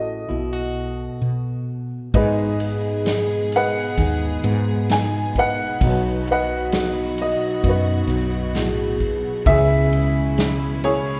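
The recording sits in a reverberant concert hall, whose long, wet tail gives this short excerpt of a folk-pop ballad a hopeful, intimate glow at a slow 66 BPM in straight 4/4. A worn, woody, slightly detuned upright piano carries the melody up front, while a dark, full-bodied jumbo steel-string acoustic guitar is fingerpicked beneath it, and a round, hollow-bodied fretless electric bass joins almost at once. At 2.1 seconds an acoustic drum kit enters with tight kick, medium-tuned snare and ride cymbal played with bundle sticks, alongside a close chamber string ensemble holding soft-attack sul tasto chords with light vibrato. From 2.6 seconds a mellow, vintage vibraphone, played with soft mallets and its motor off, adds ringing arpeggios in the background. The harmony moves from B7 through G#m and B to C#m.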